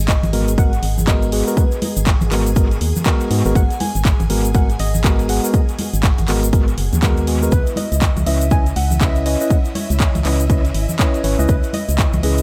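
Deep and hypnotic, this deep house excerpt moves at 121 BPM in G# minor with a swung 16th feel, shifting from G#m9 to C#m9 at 7.5 seconds. A punchy, overdriven electronic kick and a hollow, organ-like FM bass with sidechain pumping sit up front, joined by a house kit of bright hats and handclaps with dub echo, soft-handed congas and bongos, and a grainy tube shaker. Clean tine electric piano stabs through a combo amp with analog delay, a soft, round detuned pluck melody with subtle chorus and dub echo, and shimmering vintage string-machine violins in the background fill out an echo-heavy digital ambience.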